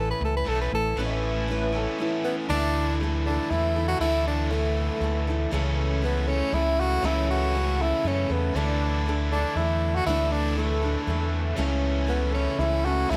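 This nostalgic rock cut, taken from a longer piece, sways in a straight 3/4 over chords that move from Aadd9 to Dsus2 and A/C#. A clear, punchy tenor saxophone carries the solo melody up front, close-miked with pop-style vibrato, while a round, amped fingered electric bass sits just as prominently beneath it. A bright picked steel-string acoustic guitar with fresh strings supplies the accompaniment, and a crunchy, double-tracked overdriven electric guitar plays a riff throughout. A very quiet, reedy accordion holds sustained chords with slow beating, dropping out at 2.5 seconds and returning at 8.5 seconds. Between 1.0 and 2.4 seconds, a dark, woody upright piano adds a brief second line in the background, slightly detuned and boxy with audible action noise, all set in light reverb and a small room ambience.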